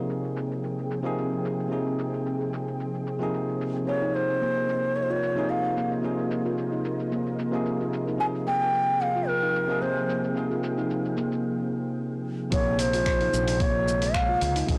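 Organic downtempo at 111 BPM with a light 16th-note swing, this meditative, earthy excerpt opens on a bright, bell-like tine electric piano and a mellow, ethereal pad that pump gently under sidechain, with a filter sweep on the pad, while a dusty, gritty sampler-style kit of finger snaps, hi-hat and shaker ticks softly beneath. At 3.9 seconds an up-front bamboo bansuri with vibrato takes the melody over Fm9 and Bb9sus4 harmony, joined by a round, ringing steel tongue drum played with rubber mallets in delayed arpeggios. After a short break, a deep electronic kick and a fretless electric bass with transformer saturation and analog chorus arrive at 12.5 seconds on a Bbm11 chord, all inside a blown-out, overdriven recording with light reverb.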